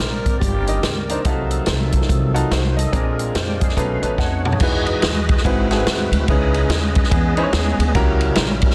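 Soulful and reverent, this uptempo gospel passage swings at 143 BPM in 4/4. It opens with a brief, breathy, whispered tenor saxophone phrase with slapback echo over a bright, vintage upright piano, a reedy, very quiet hand-pumped harmonium and a lightly overdriven tonewheel organ with key click and a slow rotary speaker. A woody, thumpy pizzicato upright bass plays from the start, and a roomy big-band drum kit with a boomy kick joins at 0.3 s to drive the groove. Piano and drum fills lead into the move to E major at 4.6 s, where the harmonium drops out, and from 7.1 s a dark, clean electric guitar adds a background second line with warbly pitch drift, in a dense, heavily limited modern master with light small-room reverb.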